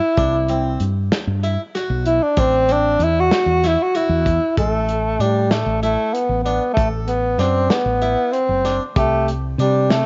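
Driving and brooding, this progressive instrumental fragment in 7/8 at 191 BPM in A dorian puts an up-front tenor saxophone with classical-style vibrato and a tape-worn tone in the spotlight, soloing from 0.0 to 4.6 seconds over Cmaj7 and Am before the harmony moves to Asus2 and C5, while a bright, plucked harpsichord spins quieter tape-colored arpeggios, a woody, round, hollow-body fretless bass sits dark and forward, and a loose, small-room indie kit with a punchy kick, medium-tuned snare and hi-hat adds a rolled-off top, all within moderate spring reverb and the dulled, home-cassette sound of a studio space.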